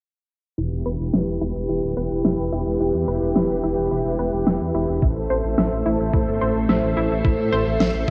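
A lush, vintage string machine leads this moody, nocturnal synthwave excerpt, holding sustained chords up front with a slow attack, ensemble chorus, sidechain pumping and a cassette tape texture. It moves in a straight 4/4 at 108 BPM in E minor, starting on Em at 0.6 seconds and shifting to Am at 5.0 seconds. A thick, detuned sawtooth bass sits up front beneath it, sustained and chorused with its own sidechain pumping. Above, a round analog pluck spins arpeggios with a bright, short decay, coloured by chorus, analog delay and tape. A fat, layered electronic snare with overdrive joins at 1.1 seconds, and an overdriven, thumpy sampler-style kick arrives up front at 5.0 seconds. Filter sweeps run through the bass, strings and pluck, and the whole piece carries the muffled, lightly reverberant character of a home cassette recording.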